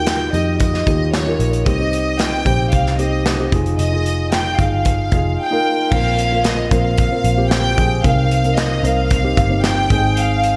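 Piano-driven pop at 113 BPM in 4/4 carries a warm, hopeful mood in this excerpt, with a close, sul tasto violin section singing the melody over a dark, mellow grand piano whose action noise is audible, both touched by slapback echo. A round, foam-muted picked electric bass anchors the low end while a punchy acoustic drum kit with handclaps, hi-hat and crash cymbals enters at 0.1 seconds, its top rolled off. Chords move from Ebadd9 through Cm and Fm7, then shift to Bbsus2 at 5.9 seconds before settling on Ab, all set in a lush hall reverb that gives a big arena sound.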